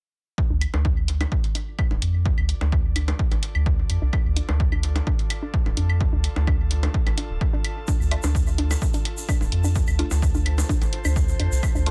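A quirky, sparse minimal techno excerpt at 128 BPM in D minor, built on a punchy up-front kick and a round, deep analog bass that pumps under the sidechain and moves through a filter sweep. Around them sit an electronic hi-hat, delayed claves and bongos, a hollow, bouncy square pluck in the background through chorus, phaser, tape echo and its own filter sweep, and an airy, breathy pad fading in. A grainy, distant egg shaker joins at 7.9 seconds, and muted, detuned dub chord stabs arrive at 8.1 seconds, all in a dry mix over a held Dm chord.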